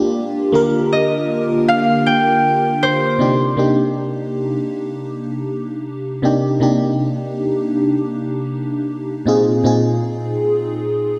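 In a straight 4/4 feel, this moody, longing R&B fragment pairs a lush, detuned FM electric piano with a soft pad layer, coloured by chorus and phaser, with a ringing, fingerpicked concert harp melody that carries tape echo from 0.9 to 5.1 seconds, in a dreamy mix soaked in hall reverb as the chords move from Ebmaj9 to Cm9 and on to Bb7sus4.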